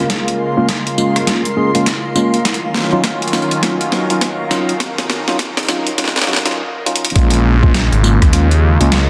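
A dense, heavily limited mix with light reverb frames this gritty, swaggering glitch hop excerpt with a swung feel, where a smooth, warbling vintage pad and a bright, ethereal airy pad accompany mellow tine electric piano stabs that pass through a filter sweep and dub echo, while compressed sampler-style boom bap drums with a medium-tuned snare sit up front over a thumpy background kick, building through a drum fill to a brief break at 6.6 seconds before a swirling, thick, saturated detuned saw bass drops in at 7.2 seconds.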